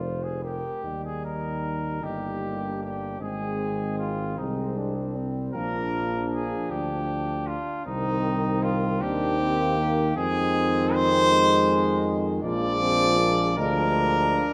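This short excerpt from a longer classical brass quintet piece sounds dark and warm, set in a concert hall with moderate reverb and a faint mains hum underneath. In Eb major at a slow, rubato 52 BPM in 6/8, the mood is solemn and heroic, the harmony moving from Eb through Ab, Bb and Cm to Fm7 and Bb7. A clear trumpet carries the melody up front, though it sounds distant and roomy, while a mellow flugelhorn sings a second line further back. The French horn, present and clear, and the punchy trombone with its light vibrato fill in the accompaniment from the background. Beneath them, a mellow tuba with a smooth top holds the bass prominently, and all five instruments play throughout the roughly 14.5 seconds.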